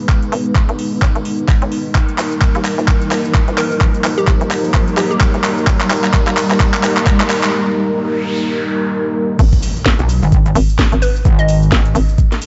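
Swaggering and bouncy, this bass house cut at 129 BPM in G# harmonic minor swings its 16ths over a build-up of drum fill and riser, pausing for a noise-swept break at 7.5 seconds before dropping at 9.4 seconds into G#m. A knocking, up-front electronic kick and a tape-warm garage kit with cracking snare, metallic hats, handclaps, shaker and crash drive a hollow FM bass and a deep, moody analog pad with 12-bit sampler grit, both pumping to the sidechain, while a mellow square pluck with chorus and analog delay flickers in at 3.6 seconds. Shortly after the drop, at 10 seconds, a heavy, detuned, saturated pluck wobble bass pulses forward, backed by an impact and a dreamy plate-reverb mix that rolls off everything above 7.9 kHz.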